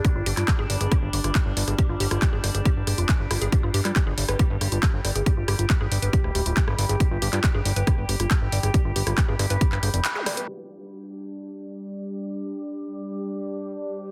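This dense, heavily limited mix carries light digital ambience and a low-pass filter over the master, giving this cut from a longer psychedelic trance piece an alien sheen at 138 BPM in straight 4/4. An up-front, heavy electronic kick and a fat, saturated sawtooth bass with a nasal, detuned edge drive the groove. A layered techno kit of handclaps, hi-hat and rim click plays alongside them, with low-pass filters on its hats, snare and room. In the background, a dark, woody wave-folded pluck plays a riff through chorus, sidechain pumping and digital delay, while an overtone-sweeping drone holds resonant sustained chords with chorus, reverb and sidechain pumping, and a filter sweep moves across the synth arpeggio sound. At 10.0 seconds the band hits an accent and the kick drops out, a brief electronic zap flickers past, and a fresh filter sweep begins at 10.5 seconds. From 10.9 seconds, a warbling, lo-fi tape-like pad comes up front, mellow and nostalgic with chorus and reverb, sounding alongside the drone to the end.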